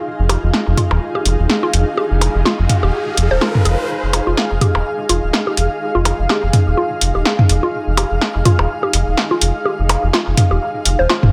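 A swung 4/4 pulse from a punchy analog drum machine with filtered hats and snare, plus electronic percussion blips and toms, drives this sparse, hypnotic minimal techno excerpt over a round, dark, up-front analog bass on Fm7, while a woody, mallet-like synth pluck carries a chorused riff with dub echo, a bright, blurred granular cloud pad evolves throughout, and a flickering, grainy texture sits very quietly until 3.9 s, when a background riser that began at 1.8 s gives way to a build-up.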